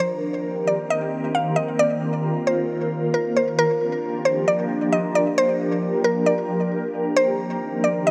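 A half-time feel in 4/4 at 134 BPM sets the pace for this brief, melancholic and hazy hip hop passage in G minor, tuned to A4 = 444 Hz and cut from a longer piece. Up front, a mallet-like synth pluck carries the melody between Bb4 and F5, its woody, round FM tone given a bright, percussive edge by a fast attack, short decay and a noise layer, then thickened with chorus and tape echo. Alongside it, also up front, an ethereal FM pad holds sustained chords from Eb3 to Bb4, blooming slowly and fading with a long release, its mellow, glassy sound shimmering through ensemble chorus, tremolo, phaser and its own built-in reverb. The harmony rests on Cm7, moves to Gm7 at 3.6 s, and returns to Cm7 at 7.2 s. A huge ambient reverb with a 4.4-second tail wraps the whole passage in a misty space.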